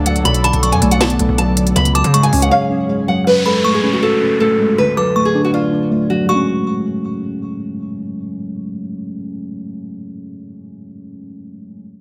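A bright, fingerpicked nylon-string guitar carries the melody up front in this melancholic, brooding trap excerpt at 159 BPM in a half-time feel, set in F# harmonic minor over Bm7, C#sus4, F#madd9 and D chords. Muted, felt-like synth keys with chorus provide intimate accompaniment, a deep, detuned analog pad holds sustained chords, and a delicate FM tine bell with chorus and delay adds a tinkling second line above. A saturated, aggressive 808-style bass and a crisp, sharp-snared trap kit drop out at 2.5 seconds for a short break, after which an electronic downlifter sweeps in from 3.3 seconds. The guitar falls away at 7.4 seconds while the synth keys carry on, all in a light reverb.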